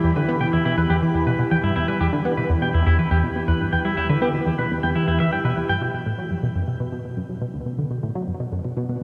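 Cosmic and hypnotic, this ambient, sequencer-driven space music is cut from a longer piece, moving at 122 BPM in a straight 4/4, first in E minor and then shifting to B minor at 5.9 s. Up front, a tight, driving sequenced synth runs a low riff throughout, its detuned sawtooth and triangle tones shaped with a filter pluck and treated with chorus, phaser and delay. Around it, an evolving wavetable pad holds sustained chords across a broad register, its detuned unison of triangle and sine waves morphing with a slow attack and long release, bathed in chorus, built-in reverb and shimmer reverb. A clean electric guitar adds bright, twangy picked arpeggios from 0.2 s to 5.8 s, carried by delay and shimmer reverb before dropping out as the harmony turns. The whole recording sits in a vast, echoing cathedral-like space with a long reverb tail, and a cassette tape character colours the finish.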